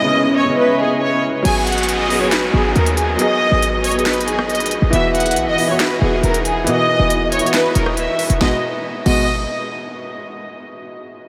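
Dark and hard-hitting, this half-time trap piece opens with a short break in which a lush, bowed violin section carries the melody over a felt-muted upright piano, its action noise audible, while a veiled con sordino string section holds chords in the background. At 1.5 seconds a punchy, tight 808-style bass with a fast attack arrives alongside an electronic trap kit of sharp snare, crisp hi-hats, handclaps, rim clicks and crash cymbal, and a very quiet downlifter sits beneath them until 4.9 seconds. The muted strings fall away as the beat comes in, leaving the violins up front with vibrato and a smooth top, and the mellow, intimate piano underneath. The harmony moves from C#m7 to G#m7, then to Esus2, returning to G#m7 at 8.4 seconds. A huge ambient reverb soaks the mix in a dreamy wash, and the violin melody also carries an analog delay.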